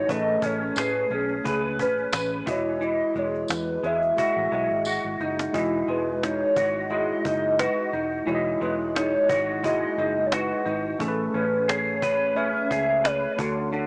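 A lightly swung 4/4 groove on snappy, close cajon carries this sunny, hazy bedroom-pop excerpt, where a hollow, woody clarinet-like synth lead sings the melody through phaser, chorus and delay over a twangy, slightly broken-up guitar with warbly pitch drift, a worn, slightly out-of-tune tine electric piano, a dark, foam-muted bass and a distant, jingly tambourine that drops out at 5.0 seconds during a drum fill, all heard through a dry, gritty recording with small-speaker saturation.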